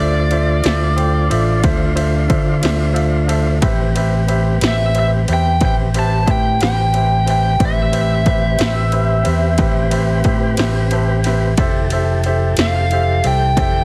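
A soulful, smoky slow blues in 12/8 features a biting, overdriven lead guitar carrying the melody, its bright picked tone touched by slapback echo. Around it, a clear upright piano with a woody, intimate sound and audible action noise plays the accompaniment, stepping forward with short fills at 2.6 and 10.6 seconds. A smooth, clean tonewheel organ holds sustained chords in the background, shimmering through a slow rotary speaker. Underneath, a round, amped fingered electric bass sits up front, and a punchy analog drum machine enters at 0.3 seconds with an overdriven kick, snare and ride cymbal that sound re-recorded in a large room. The harmony moves from Dm9 to Am9 and then to Fmaj7, and the whole excerpt is squeezed into a heavily compressed, radio-like sound.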